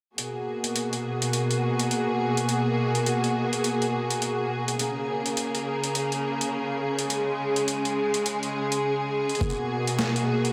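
A swung 16th-note groove at 104 BPM in 4/4 drives this funky, playful glitch hop excerpt in G# minor, cut from a longer piece. A boom bap sampler-style kit of hi-hat and high-tuned snare runs from 0.2 to 10.5 seconds, its hits compressed, pitched down and gritty, re-recorded in a large room yet placed up front. Over it, a rich studio string section holds bowed, sustained chords from B2 to G#4, smooth and even with light vibrato, and its sidechain pumping gives the ensemble a breathing push. The harmony moves from G#m9 to A#m7 at 4.8 seconds and back to G#m9 at 9.4 seconds, where a thumpy, pitched-down electronic kick lands briefly. A huge ambient reverb with a 4.9-second tail soaks the mix, lending the whole a dreamy haze.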